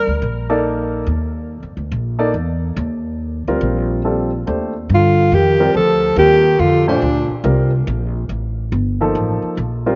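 Modal jazz at 141 BPM in 4/4 with a swung eighth-note feel, this short section cut from a longer piece carries a spiritual, hypnotic mood, settling into Eb Lydian from 4.5 seconds over an Ebmaj9 harmony. A woody, pizzicato upright bass with steel strings sits up front and runs the whole length, joined at 0.5 seconds by a baby grand piano whose warm tone fills out the accompaniment. The mellow alto saxophone carries the melody with vibrato, subtone and scooped notes, its smooth top heard in a brief touch at the very start and then a phrase from 4.9 to 7.4 seconds. Beneath it, a bass clarinet plays a second line at the same moments, soft in attack with light vibrato and scoops, set distant and roomy with a slapback echo. The overall sound carries light small-room reverb and a soft, dark top end.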